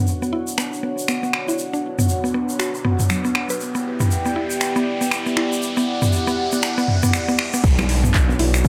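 Swung sixteenths drive this hypnotic afro house build-up, cut from a longer piece, where a dark, sub-octave analog pad and a woody, round mallet-like synth pluck with chorus and delay pump beneath a grainy egg shaker, an overdriven deep house kit of metallic hats, snaps, claps, toms and crash, and an electronic riser and downlifter from 1.9 s, until the drop at 7.6 s brings in a deep, layered electronic kick and a smooth, up-front synth bass, with ringing, high-tuned congas joining in the background just after.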